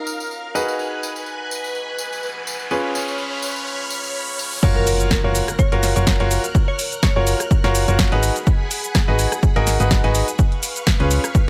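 A bright, up-front grand piano riff leads this uplifting piano house excerpt, its long sustain and audible action noise giving it an intimate presence, treated with sidechain pumping and digital delay. Behind it, a vintage string machine of violins holds shimmering, warbling chords with ensemble chorus and pumping, while a compressed, saturated acoustic tambourine ticks along through the opening section. A riser enters at 2.0 seconds and builds into an electronic impact at 4.6 seconds, where the drop arrives. There, a tape-warm electronic kick sits up front, a punchy analog drum machine supplies snare, hi-hat, rim click, shaker and crash cymbal, and a round, dark FM bass with a fast attack pumps underneath. A crystalline wavetable pluck sits in the background with chorus, cassette tape character and digital delay for a brief melody, and the swung sixteenth-note feel and light digital ambience keep the mood feel-good.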